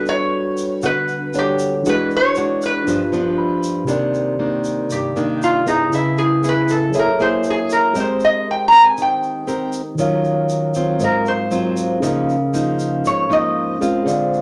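Wistful and melancholic, this straight-feel bossa nova fragment sets a metallic, nasal resonator slide guitar up front on the melody, played with fingerpicks over a mellow, clean tine electric piano and a fingerpicked, classical-toned nylon-string guitar, while a grainy, close tube shaker adds bright texture. The electric piano slips in a short fill from 3.1 to 3.9 seconds, and from 3.9 seconds the resonator guitar takes a steel-bar solo through the second section. Lush extended chords such as Gmaj7, Cm9, Abmaj9 and Db69 drift beneath it all in a wet studio ambience.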